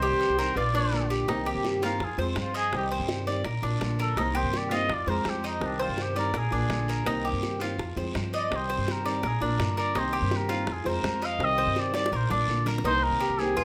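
Set in a moderate large-studio reverb with a faint mains hum, this nostalgic, sultry excerpt of Cuban son and guajira at 166 BPM in C minor features a veiled, cup-muted trumpet soloing with vibrato in a jazz style from 1.3 to 12.8 seconds, over a boxy, fingerpicked old ladder-braced acoustic guitar, bright metallic arpeggios on a Cuban tres, a woody pizzicato upright bass up front, round, low-tuned cowbell and bongos in the background, and a raspy guiro, with a drum fill arriving at 11.9 seconds.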